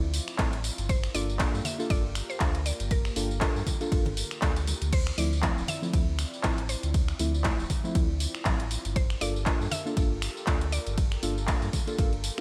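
A warm analog pad and a deep sine sub bass open this deep house excerpt together, the pad's detuned sawtooth chords sitting smooth and mellow in the background with chorus, a faint 12-bit sampler grit and sidechain pumping, while the bass, doubled at the octave, pumps along beneath it. A house drum kit arrives almost at once with bright, layered hats, handclaps, finger snaps, tambourine, ride and crash, dressed in studio and gated reverb. At 0.4 seconds a punchy, tape-toned electronic kick takes the lead in the mix, joined by ringing congas in the background and a deep, nasal chord stab that plucks and decays through chorus and delay under the same pumping. A woody, round FM mallet pluck carries the melody from 0.9 seconds, its percussive notes spreading through chorus and delay. The harmony alternates between Dm9 and Gm9 in a lightly swung groove, and the production is bright and 1980s-digital in flavour yet dry, with a warm, deep mood throughout.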